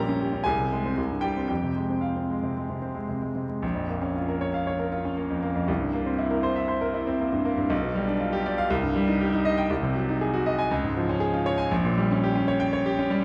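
A clear, natural grand piano sits up front as the sole voice in this passionate, stormy classical study, a virtuoso piece played with a free, rubato feel across a span from Bb1 to C6. After a brief opening passage, a new section begins at 3.6 seconds, moving through dark harmonies such as Bbm, C7, Cm and Gdim/Bb. The piano rings in a reverberant recital hall, with vinyl crackle beneath, and the fragment is cut from a longer piece.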